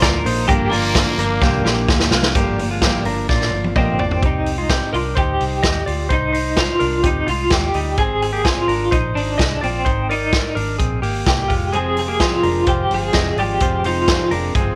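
Over a straight 4/4 pulse at 128 BPM, an up-front vintage drum kit with a punchy kick and a couple of early fills drives this bittersweet, wistful jangly indie pop excerpt in C minor, where a twangy, slightly broken-up lead guitar with tremolo carries the melody, a raspy, growling trumpet adds a brief background line until 2.1 seconds, a shimmering fingerpicked twelve-string acoustic guitar drops out at 4.2 seconds and returns near the close, a compressed, clean electric guitar recorded direct plays arpeggios, and a dark, foam-muted bass fills the low end, all set in light small-room reverb.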